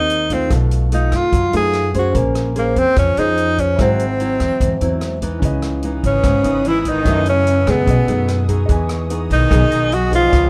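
A dark, lightly reverberant production frames this melancholic, smooth bossa nova, a short cut from a longer piece moving at 147 BPM in a straight 4/4 and settling into C# minor from 5.4 s. Up front, a breathy tenor saxophone carries the melody in a close-miked, subtoned jazz voice with vibrato, while a fingerpicked nylon-string guitar with old, woody strings supplies the accompaniment beneath it. A thumpy pizzicato upright bass on gut strings and a vintage drum kit with a punchy kick, hi-hat and rim click, its top rolled off, hold the groove, and a baby grand piano with short sustain sits in the background. At 6.0 s a bowed cello adds a rich, focused second line with vibrato, and a soft, organ-like additive pad enters with bright, detuned sustained chords, its ensemble chorus and built-in reverb giving it a calm, evolving glow. The harmony drifts through lush extended chords such as Abmaj9, B7#11 and Bbm9 before turning to C#m9, F#m7, B13 and Emaj7 in the second section.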